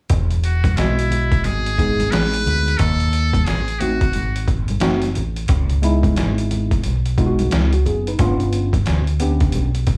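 A relaxed, warm-toned jazz-hop groove drifts along with a swung 16th-note lilt, cut from a longer piece. A gritty, pitched-down sampler-style drum kit sits up front, its overdriven, compressed sound built on a thumpy kick, a medium-tuned snare and hi-hat, while a dark, round fingered electric bass in the low register anchors the chords from Emaj7 through C#m7 to a closing G7#11. A muted trumpet plays a brief, forceful jazz solo from 0.4 to 4.5 seconds, its brilliant, buzzy, thin tone carrying light vibrato and sounding distant and roomy. A worn, slightly out-of-tune tine electric piano enters at 0.8 seconds and comps cleanly and directly up front. Very quietly underneath, a close, dry tube shaker and ringing congas add acoustic texture, all set in a light studio reverb.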